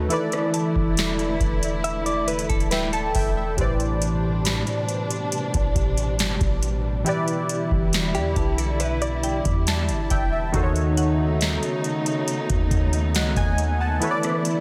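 A dry, close-sounding cut from a longer contemporary R&B piece, its longing, sensual mood carried by up-front analog keys with a detuned sawtooth tone, chorus and phaser, over sustained bowed strings with expressive vibrato. A booming analog drum machine with a deep kick, crisp snare and metallic hats sits forward over a dark, sine-toned 808-style bass, while a woody FM mallet pluck with chorus and delay glints in the background from 0.5 seconds. A compressed, direct-recorded clean electric guitar plays picked arpeggios through phaser and delay from 1.8 to 10.3 seconds, as the chords move from E7sus4 through Am11, Em7 and B9/D# back to E7sus4.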